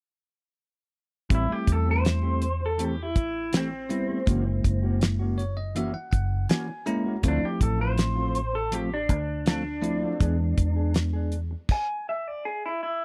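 This straight-eighth soul blues in A minor moves at a brooding, soulful 81 BPM in 4/4, a short section cut from a longer piece and tuned slightly sharp at A4 = 444 Hz. The damped 70s drum kit sits up front with a fat snare, tight kick and dark cymbals, while the foam-muted fingered bass adds a round, punchy bottom from 1.3 seconds. A bell-like tine electric piano with subtle chorus supplies accompaniment and plays a fill between 5.0 and 7.2 seconds, as a mellow, clean electric guitar adds fingered stabs through harmonic tremolo. Leading the way, an electric guitar through a small old amp carries the melody with a slightly broken-up, lo-fi, compressed tone colored by phaser. The chords run Am7, F#7, Dm7 and E7 before a stop at 11.7 seconds, with the lead guitar continuing until 13.0 seconds. The sound is a dry, close 1970s-style studio recording with small room ambience.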